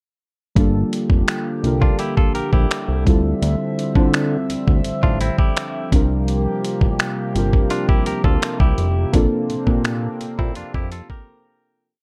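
A dry, close-sounding mix frames this short, late-night contemporary R&B piece in G dorian at 84 BPM, where a gritty, sampler-style drum kit with a thumpy kick, hi-hat and finger snaps sits up front in a slow beat with skipping kicks, under a fat, saturated analog bass playing a smooth syncopated line with muted ghost notes. Muted, felt-like synth keys with a warbling chorus add rootless rhythmic chords over a shimmering pulse-width pad, moving through Gm7, Dm11, C7sus4 and Bbmaj9. From 1.8 seconds a bright, twangy clean electric guitar adds short fills in thirds between phrases, and the track fades out from 9.1 seconds, with the drums dropping away at 11.3 seconds.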